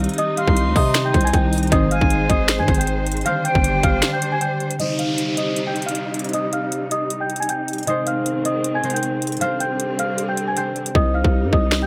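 Dark, melancholic trap hip hop at 156 BPM in a half-time feel in C minor, where a slightly out-of-tune, bell-like celesta carries the melody through delay over fingerpicked, ringing concert harp and lush bowed strings, while a distant, pure flute adds a second line and a fat, chorused analog synth brass stab flashes briefly in the background, all above up-front trap drums with a hard-clipped kick, sharp snare and metallic hats plus a growling, buzzy 808 bass that drops out at a break at 4.0 seconds and sits out through a filter sweep and an electronic downlifter before returning at 10.9 seconds.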